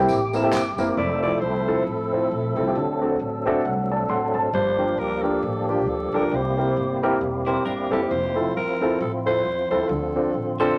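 Uptempo gospel in F major at 135 BPM, this jubilant, hopeful passage swings its eighths lightly over chords moving from C7 through Fmaj7, D7, Gm7 and back toward Dm7. A dark, mellow upright piano sits up front with audible action noise, playing accompaniment throughout and slipping in a fill from 3.2 to 4.5 seconds, while a woody, growly upright bass holds the bottom. A fat, lightly overdriven tonewheel organ sustains chords through a slow rotary speaker with chorus vibrato, its percussive attack and key click adding bite. Tambourine, maracas and group handclaps sound close for just the opening moment, and at 1.0 seconds a breathy, raspy alto saxophone takes the melody with vibrato and a smooth top. A clean, compressed electric guitar adds a picked second line from 7.5 seconds, all set in a moderate studio reverb under a layer of vinyl crackle.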